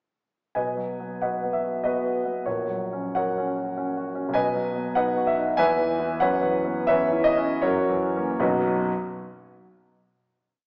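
Romantic classical character piece for solo grand piano in B major and 3/4, warm and passionate, with a polished, up-front piano tone carrying a tune over broad broken chords at a rubato 72-103 BPM that slows from 3.5 seconds, moving from B through F#7 to a final B chord at 8.4 seconds in a wet recital-hall reverb with a small-speaker sound.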